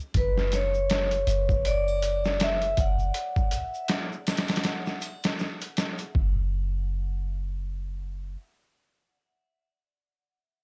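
A tube shaker and triangle tick softly in the background as this hypnotic, smoky trip hop excerpt opens, joined at once by a deep, round 808-style bass with tube saturation and a muffled, pitched-down, compressed sampler-style drum kit with a thumpy kick and medium-tuned snare, while a bright, ringing vibraphone struck with hard mallets floats through tape echo until 5.0 s, all in a dry, gritty cassette-tinged swing that leaves the dark bass alone until 8.4 s.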